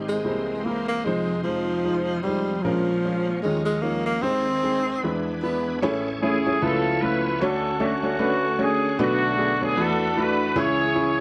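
A woody upright piano, a bright, lightly overdriven tonewheel organ with key click and slow rotary speaker, and a very quiet bowed string section open this jubilant, hopeful, swinging gospel passage, with a breathy tenor saxophone carrying the melody until the strings and sax stop at 5.8 s and a mellow, vintage horn section takes up the tune at 6.2 s over the piano and organ, set in a lightly reverberant studio room.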